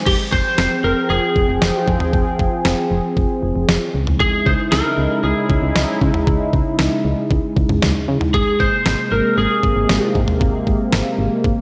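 A twangy, slightly broken-up lead guitar carries the melody with subtle chorus and delay over a sweeping, detuned sawtooth pad, a punchy, round FM bass and a thumpy, tape-warm 8-bit drum machine of kick, snare, toms and crash in this bright, nostalgic synth-pop excerpt at 116 BPM, its chords moving from Fmadd9 to Dbmadd9 to Abadd9 in a dreamy mix soaked in lush hall reverb.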